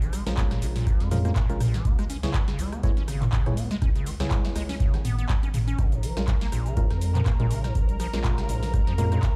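A squelchy, resonant square-wave acid bass riff drives this hypnotic, trippy acid house excerpt at 122 BPM in 4/4, with a light swing on the sixteenths in Bb phrygian, its hollow filter plucks thickened by tube saturation and analog chorus and pumping against the kick. Beneath it, a round, dark analog bass holds the low end. A deep, tape-toned electronic kick anchors a booming analog drum machine of crisp snare, metallic hats, handclaps, rim clicks, cabasa and toms, with a short room around the snare, clap and hats. Percussive, organ-like stabs with a noise layer pick out the chords through chorus and dub echo as the harmony moves from Bbm7 to Dbm7 and back. A barely audible downlifter passes by 1.9 seconds, and a lush, detuned unison pad enters at 5.8 seconds with bright, sustained chords that pump with the groove. The mix sits mostly dry yet carries the feel of a big sound system in a bare room.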